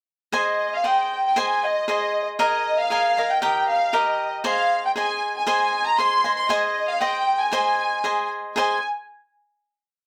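Mexican folk in a straight 2/4, proud and romantic, carried by a dark, woody violin section that bows a motif-based melody in sentence-like phrases with vibrato and a smooth top, sitting up front from 0.4 seconds. A crisp, picked cavaquinho strums sixteenths in open chord shapes beneath it, moving from Ab through Ebsus4 and Eb back to Ab. The short piece settles onto a final chord at 8.6 seconds, heard in a small room with a moderate touch of reverb.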